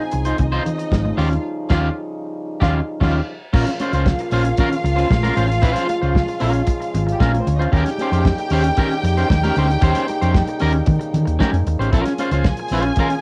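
Lightly reverberant and hazy with home cassette tape, this sultry, glamorous disco clip sets a twangy, slightly broken-up electric guitar and a round, hollow-body fingered bass up front over a damped 70s drum kit with a fat snare and tight kick, while a lush, bowed string section with vibrato carries a second line, a distant French horn section holds dark sustained chords, high-tuned congas ring in the background, and the band hits an accent from 1.4 to 3.5 seconds.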